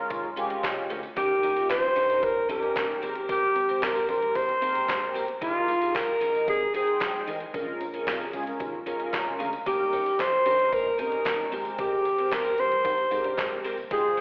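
Slick and funky, this early-eighties boogie funk excerpt moves at 113 BPM in a straight 4/4, tuned to A4 = 438 Hz, and cycles through Bbm7, Eb7, Abmaj9 and Fm11. A crisp, sampler-style 8-bit drum machine with a thumpy kick, medium-tuned snare, hi-hat and handclaps sits alongside a very quiet, jingly tambourine, while a dark, glossy chorused synth bass built from pulse, sawtooth and triangle waves plucks away in the background. Mellow synth brass supplies round, detuned, evolving chords coloured by chorus, phaser, vibrato, plate reverb and slapback echo, and a clean, picked electric guitar plays a compressed riff treated with ensemble chorus and slapback echo. From 1.2 seconds a breathy, whispered alto saxophone takes the solo melody up front, intimate and warm with plate reverb and slapback echo. The whole performance sounds like a live gig heard through a venue's PA, with club and recital hall reverb and a thin, telephone-like tone.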